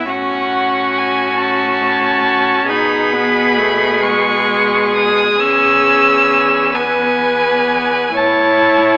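A serene, warm slow romantic movement for string quartet in E major opens with all four bowed players together at a rubato 41-47 BPM in 6/8: a clear, vibrato-rich first violin sings the melody up front beside a warm, smooth-topped second violin line, with a softly glowing viola accompaniment touched by light vibrato and a focused cello bass, as the chords move from F#m/A through B13 to E and A in moderate scoring-stage reverb and an AM-radio sound.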